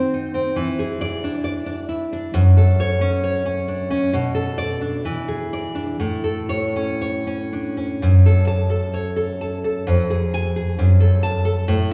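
A full-bodied, fingerpicked nylon-string guitar sits up front with finger squeak in this brief, tender and sunny romantic passage for solo classical guitar, moving with rubato in 2/4 at roughly 59-68 BPM from A major into F# minor at 8.0 s, all bathed in a lush concert-hall reverb.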